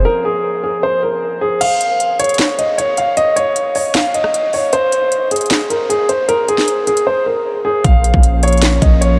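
This is a melancholic, menacing slice of trap-style hip hop at 154 BPM in Bb minor, moving with a half-time feel. A dark, vintage baby grand piano carries the melody up front throughout, its long-sustaining tone rounded by a low-pass filter and trailed by tape echo. At the opening, a felt-muted upright piano adds very quiet, intimate accompaniment with audible action noise, while a breathy, detuned pad and a boomy 808-style bass sound briefly before the bed drops away. The trap kit comes in at 1.6 s with a sharp snare, crisp hi-hats, handclaps, rim clicks and crash cymbal, then falls silent at 7.1 s. At 7.8 s the hard-clipped kick finally lands on a Bb minor chord as the pad and deep, sine-based bass return. The whole mix is soaked in an enormous, dreamy ambient reverb.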